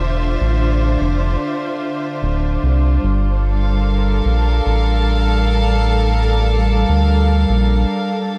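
Ambient dub at 74 BPM in 4/4 with a straight feel, set in G dorian, this short cut from a longer piece feels hazy and deep. A dark studio string section holds sustained bowed chords from D3 to F5, played sul tasto with light vibrato and a soft attack, giving an intimate, close ensemble sound. Beneath it, a round analog bass sits between D1 and D2, its mellow, evolving blend of sawtooth and sine colored by ring modulation and tube saturation, with a fast attack and long sustain. Both parts sit up front in a light reverb, with the bass somewhat louder than the strings. The harmony moves from Dm9 to Gm7 at 3.0 seconds, and the bass stops at 7.9 seconds while the strings carry on to 8.4 seconds.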